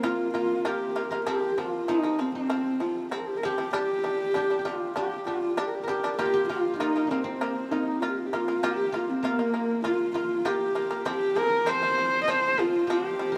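Bathed in a huge, lingering reverb, this windswept, vast Mongolian folk excerpt sets a dark, husky horsehead fiddle up front with soft-attack bowing, light vibrato, an airy bow and portamento over a mellow, silvery guzheng second line and buzzing, percussive shamisen arpeggios, all three playing throughout its 13.4 seconds as the chords move through Bb, F and G.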